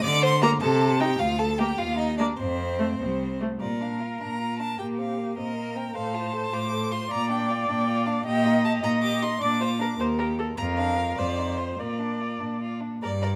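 Dramatic and stormy, this quick classical-period movement for string quartet in Bb major runs in 6/8 at 103 BPM and is cut from a longer piece. A clear, close first violin carries the melody above the second violin's smooth, even second line, while the viola's focused accompaniment enters at 0.4 seconds and the intense, up-front cello bass gives the texture its weight, all four bowed with vibrato. A moderate large-studio reverb lends the ensemble space as the harmony moves among Bb, Cm, Eb and F before settling back on Bb.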